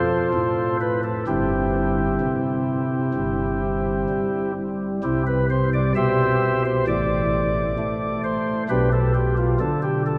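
In a straight, unhurried 4/4, this reverent, serene chorale-style classical excerpt moves through F, C/G, C and G/B chords. A solo pipe organ on soft, warm flute stops carries it alone, sitting up front with a baroque voicing, a gentle chiff and a tremulant. A long cathedral reverb, about 5.9 seconds, surrounds it and places the listener further back in the room.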